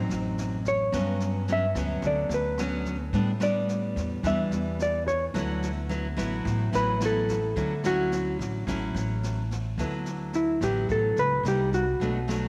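A straight 4/4 bossa nova groove at 108 BPM in D major sets a breezy, relaxed mood: a brushed jazz kit with a boomy kick, rim click and medium-tuned snare plays in a small, natural-sounding room, while a woody, growly pizzicato upright bass anchors the low end. Up front, a fingerpicked classical nylon-string guitar with fresh strings and audible finger squeak comps through chords such as Gmaj7#11, A9sus4 and D69. A dark, clean hollow-body electric guitar, played with the fingers, carries the melody from 0.7 s as a solo until 9.8 s, when a new section moves from D69 to Cm7, and the ensemble sits in a moderate echo-chamber reverb throughout this excerpt.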